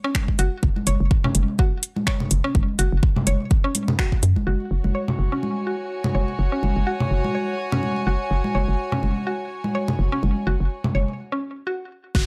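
A woody, bright mallet-like synth pluck riff with chorus and delay opens this cool, sparse minimal techno cut, joined by a punchy layered kick, tape-warm congas, a booming analog drum machine of finger snaps and metallic hats, and a hollow, bouncy FM bass that pumps up front. The drum machine drops out at 4.3 seconds, after which a nasal, gut-string chamber section of bowed strings enters at 4.5 seconds, before a short break and an electronic downlifter with a final kick at 12.1 seconds.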